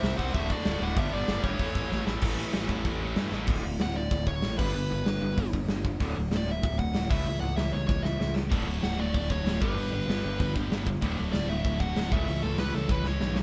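A rowdy, rebellious punk rock excerpt in D major at 191 BPM opens with a dark, smooth lead guitar melody over two bright, picked overdriven guitar riffs, a growly fuzz bass and a punchy, up-front acoustic drum kit in a big room, while a scooped, double-tracked high-gain guitar churns in the background, dropping out at 3.5 s and returning at 8.5 s, all under light reverb with the feel of a band playing live together and drum fills punctuating the phrases.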